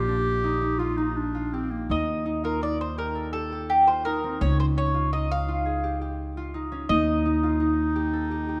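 A close-miked clarinet opens this hopeful, playful piece of contemporary chamber music, carrying a second line in classical style over ringing, fingerpicked harp arpeggios and a dark, pizzicato upright bass on steel strings. The music moves at 168 BPM in an uneven 7/4 with a straight feel, set in Eb lydian and opening on a Bb6 chord. At 1.9 seconds the clarinet drops out and a picked mandolin takes the melody up front, its double strings giving a woody edge as the harmony moves from Eb to Db and back to Eb. The clarinet returns at 6.9 seconds to sit beside the mandolin while the harp and bass continue underneath. A moderate scoring-stage reverb and a warm, shadowed production round out the sound of this short passage cut from a longer piece.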